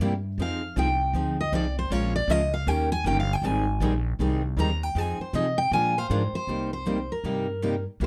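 This is a bittersweet, fiery stretch of acoustic string swing in the jazz manouche style, cut from a longer piece, with a swung feel. Two picked steel-string guitars accompany throughout, one a warm, up-front dreadnought and the other a bright concert model, while a woody, thumpy upright bass on gut strings is plucked close in the mix. A dark, full-bodied jumbo guitar, set further back with audible finger squeak, takes the melody from 0.4 seconds and solos until 6.5 seconds over changes moving from Fm7 through Bbm7, Eb7 and Abmaj7, all within a dusky production touched by light reverb.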